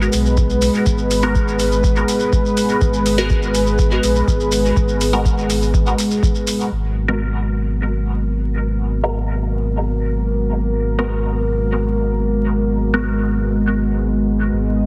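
Hazy and nocturnal, this dub techno fragment rests on a dark, detuned analog pad holding a G#m9 chord with chorus and sidechain pumping, over a smooth, clean sine sub bass that sits up front and pumps alongside it. A deep analog kick, metallic electronic hi-hats and a grainy, saturated shekere drive the opening until about 6.7 s, while from 1.2 s a muted, resonant dub chord stab flickers through phaser and dub echo. The whole piece is wrapped in light digital reverb, heavy radio-style compression and vinyl crackle.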